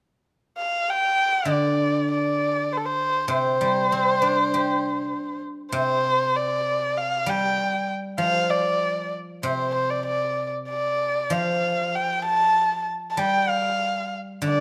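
A lone erhu opens this festive, pastoral excerpt of Chinese traditional chamber music at 0.6 s, its dark, intimate bowed tone carrying the melody up front with light vibrato, soft attacks, sliding portamento and an airy bow. At 1.5 s a bright, silvery guzheng joins in accompaniment, its fingerpicked notes ringing beneath the erhu at a straight 98 BPM in 4/4 in the G shang mode. Both instruments sit close and detailed within a moderate recital-hall reverb, and the passage is cut from a longer piece.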